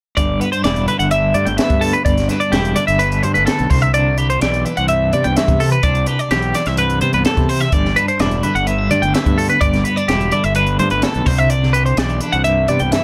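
A lightly reverberant, intricate slice of math rock and midwest emo at 127 BPM in G major, where two bright, twangy twelve-string electric guitars, one playing tremolo-tinged accompaniment up front and the other picking high arpeggios, ring over a fuzzy, overdriven fingered bass and a dark, smooth compact cocktail drum kit with a high-tuned snare and punchy kick, cycling wistfully through G6/9, Cmaj9 and G6 chords for about 13 seconds.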